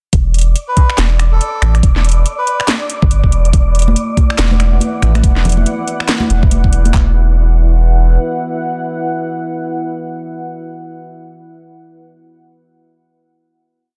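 A swung half-time beat drives this dark, meditative deep dubstep piece: a knocking, up-front kick and claps sit over a round, soft sub bass holding long notes, while a second garage kit adds cracking snare, metallic hats and snaps, a breathy wind-like texture holds one high note, a reedy melodica plays short echoing phrases until 2.7 seconds, dry, bright congas with dub echo join at 3.9 seconds, and a moody, chorused ambient pad enters at 4.3 seconds to carry the final chord.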